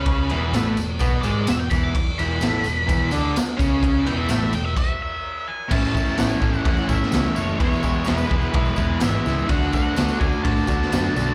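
Heard through a club PA with light reverb, this rowdy, raw garage rock excerpt puts a gritty, saturated drum kit up front, its boomy kick, medium-tuned snare and crash cymbal pumping in a small room. A double-tracked, overdriven guitar drives the riff over a round, dark hollow-body bass with its own overdrive, while an octave-fuzz lead, distorted and treated with slapback echo, solos from the start and a jingly tambourine sits distant in the background. The band hits a stop at 4.8 seconds before a new section begins at 5.7 seconds.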